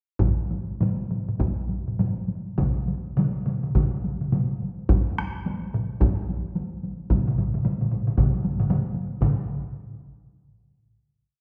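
A wet recital-hall reverb surrounds this short, complete Japanese taiko piece, which is ceremonial and driving in 4/4 with a 16th-note swing, speeding up from 100 to 124 BPM. Two taiko ensembles beat out repeating patterns with heavy sticks, one up front in a live room and the other close and dry, while a solo taiko in the background, also struck with heavy sticks, plays taiko phrases from the start. A second solo taiko with hard sticks and a vintage, band-limited tone enters up front at 2.6 s, and the piece closes on a final hit at 9.2 s.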